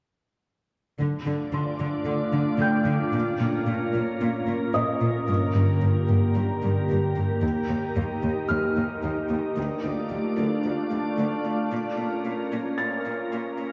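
Tense and futuristic, this hybrid orchestral and electronic film cue builds at 112 BPM in D phrygian, led by a glassy, warbling FM pad holding sustained chords from 1.0 seconds, treated with ensemble chorus and its own reverb. A lush, bowed cello section carries the bass up front with smooth vibrato, while a soft, felt-muted upright piano adds intimate high texture through a delay from 1.5 seconds. The sound sits in a wet concert hall, heard from further back in the room, as the harmony moves from Dm through Bbm, Gm and Eb.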